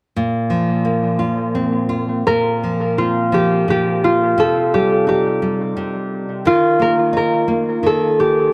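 A full-bodied, fingerpicked nylon-string guitar opens this innocent, sleepy children's lullaby at 0.2 s, swaying in a rubato three-beat feel, before an up-front concert harp enters at 2.3 s with a ringing, warm fingerpicked melody, both parts trailed by analog delay and bathed in a moderate spring reverb that gives this short fragment an echo-heavy glow.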